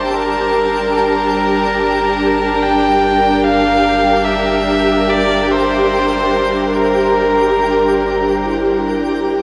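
A deep, rumbling drone fades in beneath a lush bowed string section holding a Gm7 chord, while a rich, earthy electric violin sings the melody up front through tape echo, with light vibrato and portamento. This reflective, serene ambient passage floats in free time, cut from a longer piece. Soft-mallet vibraphone arpeggios ring mellow and metallic far back in the mix, and a twinkling granular texture adds sparkling, octave-up shimmer above. The violin falls silent at 8.4 s, leaving the smooth strings, vibraphone, texture and ominous drone to carry on to 9.4 s. A long, wet shimmer reverb and a dark, warm production wrap the whole sound in a hazy glow.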